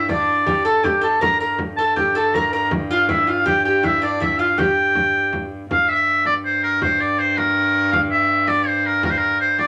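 A straight 6/8 lilt at 107 BPM drives this mysterious medieval dance fragment in G dorian, where a bright, soft-attack shawm carries the folk-style melody up front, a nasal, metallic resonator slide guitar played with fingerpicks adds a second line until 5.5 s, a distant bowed viola da gamba holds a reedy gut-string drone on G2 with light vibrato, and a close, dry frame drum struck with soft hands supplies the percussion, inside a wet studio reverb.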